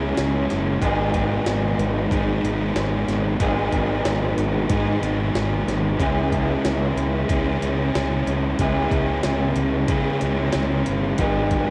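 Shoegaze-tinged rock and dream pop at 92 BPM in C# minor, this melancholic, dreamy excerpt from a longer piece moves between C#m7 and G#m7 on a cassette-recorded home take with light reverb. A dark, overdriven guitar with subtle chorus sits up front with a fuzzy, overdriven fingered bass, while a slightly broken-up guitar through a small old amp plays its riff in the background, bathed in reverse reverb. From 0.2 seconds, a gritty, pitched-up jungle sampler-style kit adds a thumpy kick, a high-tuned snare and hi-hat, compressed and re-recorded in a large room.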